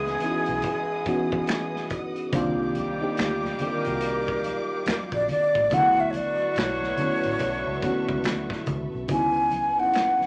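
Wrapped in a wet club reverb, this introspective, soulful neo-soul R&B excerpt at 71 BPM sets a breathy, hollow jazz flute melody up front over a mellow chorused FM electric piano, dark bowed strings, distant horn stabs, a round foam-muted fingered bass, a crunchy, gritty breakbeat kit with finger snaps and close dry congas entering at 2.3 seconds, moving through C#m11, Cm11 and Bm11 before the flute takes a brief solo from 9.1 seconds.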